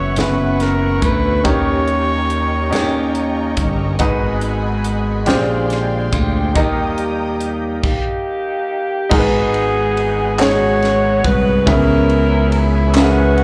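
Heard through a club PA with light reverb, this brief, fervent and soulful slow gospel excerpt in 6/8 at 47 BPM in G# minor opens with a punchy, close-miked trumpet melody over brilliant grand piano, growly up-front slap bass, a crisp fusion drum kit with a high-tuned snare, a very quiet lightly overdriven tonewheel organ with slow rotary, and lush bowed strings until 7.8 seconds, when a tight, vintage saxophone section takes the melody with slapback and tape echo, joined by hollow, faint group handclaps from 10.4 seconds.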